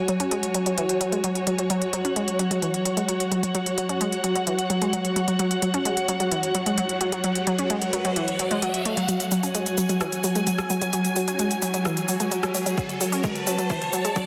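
Dark and hypnotic, this driving peak-time techno excerpt at 130 BPM in straight 4/4 pumps a deep, moody ambient pad drone and a woody, bowed string section with vibrato under a bright, detuned sawtooth unison pluck riff with tape echo, while a techno drum kit of smooth hi-hats, rim click and shaker sits up front. A filter sweep moves across the synth arpeggio sound as the harmony settles on F#m at 9.1 s, where a build-up begins and an electronic riser, already entering at 6.5 s, carries it forward. At 12.8 s a punchy, layered electronic kick arrives with a drum fill, all bathed in a huge ambient reverb on a dense, heavily limited master.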